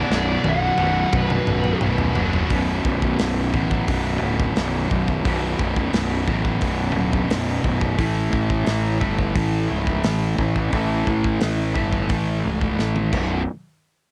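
A growly, fuzz-laden fingered bass sits up front in this aggressive, relentless heavy metal excerpt in B minor, moving at 88 BPM in a straight 4/4. A dark, high-gain lead guitar carries a brief melody with analog delay over the opening 1.8 seconds, while a picked high-gain guitar adds a riff that drops out at 2.6 seconds. Two more bright, distorted guitars, one compressed and one double-tracked, hold the riff in the background throughout, shifting from a B minor opening onto B5 and then A5 at 8.0 seconds. An acoustic drum kit with a punchy kick, medium-tuned snare, toms, hi-hat and crash cymbals sounds polished and airy in a small room, opening with a fill and closing the passage with another. Cut from a longer piece, it carries the gritty character of a home cassette recording, with little reverb and tape coloring on the guitars and drums.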